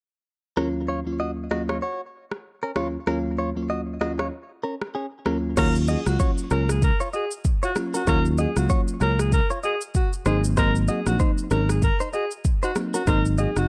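Smooth and sultry, this afrobeats excerpt opens with a sparkling FM electric piano treated with chorus, a twangy, clean electric guitar riff carrying digital delay, and an electronic afro-pop drum kit with a deep kick, rim click, shaker and crash cymbal. At 5.6 seconds a growly fingered electric bass arrives up front as a clear alto saxophone takes the melody with vintage vibrato, and the harmony moves from Ebm7 to Ab7 at 10.3 seconds. The production is dark and dry, with little reverb.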